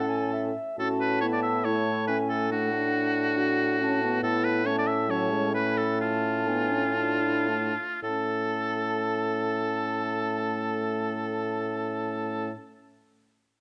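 From the first moment, a full wind quintet plays together in this spirited, cheerful classical-period movement in A major at 108-143 BPM, with an airy, vibrato-tinged silver flute carrying the tongued melody, a bright, up-front oboe on the second line, a clear clarinet tucked in the background, a mellow, roomy French horn and a warm bassoon holding A as the bass, all in light reverb with close, detailed miking, as the rubato feel eases into a slowdown from 3.4 to 8.0 seconds and the harmony moves through A, D over A and D minor over A before a new section opens back on A and the music is cut off from the longer piece.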